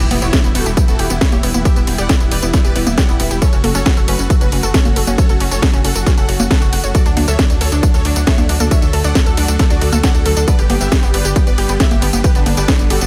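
Uplifting, soaring trance at 136 BPM in D major, cut from a longer piece, where huge detuned supersaw chords carry the melody with lush chorus, cassette tape colour and delay over a silky analog string pad in the background, bright wave-folded unison pluck arpeggios, a tight, driving sequencer bass with tube saturation, all pumping to the sidechain, while an overdriven house kit with cracking snare, congas, hi-hat, ride and tambourine backs a punchy, up-front electronic kick that enters at 0.3 seconds, a very quiet impact opens the first 1.7 seconds, and the chords move Em, F#m, D, G inside a digital ambience.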